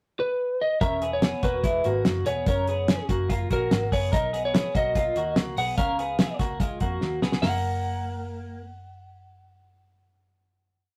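Jangly indie pop in F# major at 146 BPM, nostalgic and bright, where a slightly broken-up lead guitar opens on a pickup bar and carries a motif-based melody up front, a clean, twangy twelve-string electric guitar rings out arpeggios doubled in sixths over E6, F#maj7, Bmaj7 and C#7, a foam-muted vintage bass plays a round, melodic line, and a cloth-damped, thuddy drum kit with a fat snare and tight kick keeps a brisk backbeat until a fill at 7.0 seconds leads to a final F# chord, heard through a rough rehearsal-room recording with tube saturation.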